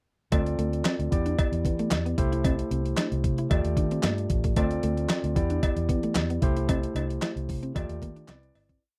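Danceable and funky, this short early-eighties boogie funk piece moves at 113 BPM in 4/4, cycling through Dm7, Em7, C6 and Ebmaj9#11 before settling on Cmaj9. An overdriven, detuned 8-bit drum machine sits up front with a thumpy kick, hi-hat and a snare layered with handclaps, joined by a fat, foam-muted fingered bass line with slides, a bright, barky electric piano holding drop-2 chords through a combo amp, a dark, clean guitar playing a muted single-note line with analog chorus in the background, and cowbell quarters. The dry, close studio sound fades out from 6.7 seconds to the end at 8.8 seconds.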